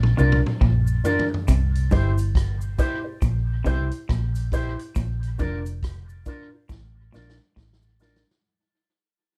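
This short excerpt from a longer roots reggae piece has a dark, warm production with light reverb, and a laid-back, sunny mood over a gently swung groove. Up front, a vintage drum kit of hi-hat, kick, rim click, snare and toms, with a natural studio-room sound, tight kick, medium-tuned snare and rolled-off top, plays fills from the opening and again from 6.7 seconds. A round, amped, foam-muted fingered electric bass sits beside it in the low register. A bright, compressed semi-hollow electric guitar carries a clean picked riff, while a twangy electric guitar through an envelope filter adds quieter accompaniment trailing dub echo. A mellow, woody upright piano supplies stabs with long sustain, and a close, dry cabasa ticks away in the background as the harmony moves from Bb to C and back to Bb, with the whole passage fading out after 1.5 seconds.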